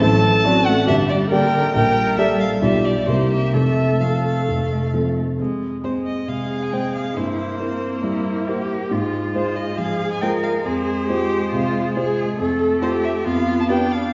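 At a quick 137 BPM in 4/4, played with a rubato feel, this cheerful, spirited classical-period movement for piano quartet opens in F major before turning to F minor at 5.4 s. A smooth, even violin with vibrato carries the melody, while a cello with soft attacks and expressive portamento sings a second line. A focused viola and a dark, mellow grand piano with short sustain and a vintage character fill in the accompaniment, the piano sitting up front. The sound has a wet scoring-stage reverb and is heard from further back in the room, giving this excerpt a softened, distant top end.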